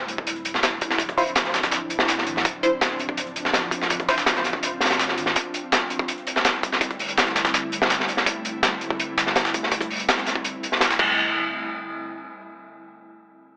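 Drum and bass with a jungle edge, this nostalgic, dark excerpt sets an ethereal, airy pad sustaining chords throughout against two gritty breakbeat kits, a saturated, up-front acoustic kit with a high-tuned snare and dark cymbals over a compressed, tape-toned sampler kit in the background, while a round dub sub bass sits deep beneath until 5.3 seconds and returns briefly at 11.0 seconds, and a muted, nasal chord stab with phaser, chorus and dub echo appears between 1.2 and 4.1 seconds, all coloured by a small-room, AM-radio sound.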